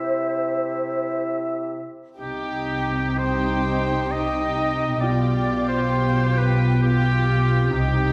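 The recording sits in a wet scoring-stage reverb, heard from further back in the room, giving this slow romantic orchestral fragment a lyrical, tender glow in a rubato triple metre. It opens with woodwinds: a punchy, close-miked clarinet, an airy, hollow small flute group and a warm bassoon, which sits up front, all sounding briefly before falling away by 1.9 seconds. The clear oboe carries on throughout, its vibrato line spanning G4 to E5. At 2.2 seconds the strings arrive, all bowed softly sul tasto. A rich violin section takes the melody in the background while a second violin section floats above a dark viola accompaniment. Below them, cellos with a smooth top and an intimate double bass section anchor the bass as the harmony shifts from C to Cm and then G7/B.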